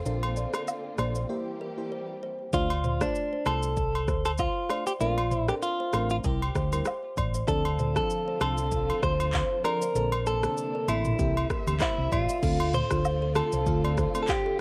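A dry, close home cassette recording carries this mellow, smooth afrobeats excerpt at 97 BPM in D minor, lightly swung on the sixteenths and cycling through Bbmaj9, C7 and Dm7. An electronic afro-pop kit with a deep kick, handclaps, rim clicks, shaker, toms and crash joins agogo bells and woodblock, while a round, punchy hollow-body bass sits up front beneath a crystalline, chorused FM electric piano and a woody, thumbnail-plucked kalimba riff with tape echo tucked in the background. Lush bowed strings hold chords through the opening and a brief break, fall away as a twangy, compressed clean electric guitar takes up the melody at 2.5 seconds, and return at 7.5 seconds.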